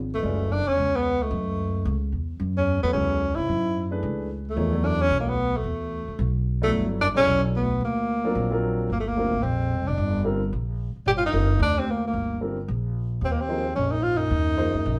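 A woody, dark pizzicato upright bass opens this hypnotic, spiritual modal jazz fragment at a swinging 222 BPM in 4/4, joined almost at once by an up-front solo tenor saxophone with a mellow, smooth top, light vibrato and scooped notes, a breathy, punchy bass clarinet playing a second line in the background, and an intimate grand piano with audible action noise and long sustain that sounds briefly at 0.2 s before settling in from 2.8 s, the band playing live together in one room with moderate reverb as the harmony moves through F#m11, Em11 and D7alt before turning to G phrygian at 8.9 s over Gm7 and Ebmadd9.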